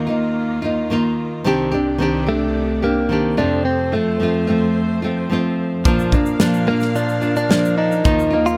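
Close, detailed and nearly dry, this sunny, heartfelt acoustic pop passage opens with a twangy, clean electric guitar carrying the melody. Beneath it, a full-bodied, fingerpicked nylon-string guitar plays the accompaniment, and a lush, bowed string section sustains chords with vibrato. At 5.9 seconds a small-room drum kit with tight kick, medium-tuned snare and shaker joins up front, along with a second scooped, compressed electric guitar playing arpeggios.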